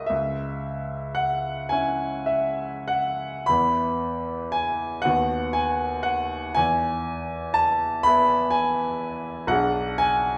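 A clear, open baby grand piano sits up front with long sustain in this mournful, yearning romantic nocturne, unfolding alone in a slow 6/8 with free rubato through a brief excerpt of a longer piece, its harmonies opening on C-sharp minor and drifting toward a diminished chord near 9.5 seconds inside the lingering bloom of a recital hall.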